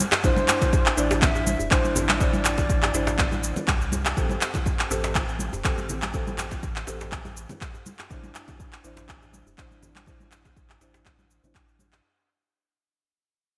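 Hypnotic and earthy, this afro house excerpt moves at 122 BPM in 4/4 with a light 16th-note swing, built on a deep, tape-toned electronic kick, up-front electronic cabasa and handclaps with gated reverb, and a round sine sub bass that pumps under the sidechain. Background congas with bright, thin skins and a tight, cracking djembe with metal rattles add acoustic small-room texture, while a soft, felt-muted upright piano plays short vintage stabs through delay, a low-pass filter and a filter sweep over the chords Cadd9 and Am7. An airy bamboo bansuri with vibrato carries the melody through delay from 0.2 to 3.7 seconds, and the whole piece sits in a bright 1980s-style digital production that fades out across its length.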